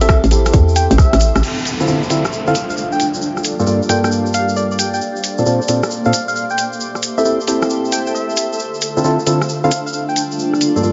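UK garage in a two-step cut, this short passage from a longer track feels moody and skippy, with a swung shuffle under a minor-key progression that moves through seventh and ninth chords. A tight, up-front electronic kick and a hollow, bouncy FM bass punch through the opening second or so, and a drum fill from 1.0 seconds and a band accent at 1.3 seconds hand over to the next section. The garage kit of crash, metallic hats and rim click sits low and filtered, joined by a grainy acoustic tube shaker. A nasal, organ-like stab carries lush chorus and a filter sweep from 1.4 seconds onward, while a round, keys-like FM lead with vibrato, phaser, tape echo and vintage sampler grit sings the melody. Beneath them, a cloudy, evolving granular pad and a breathy pad that enters at 2.1 seconds both pump with sidechain compression, a downlifter sweeps down from 1.4 to 5 seconds, and the whole mix sits in a lush digital hall with its top end rolled off.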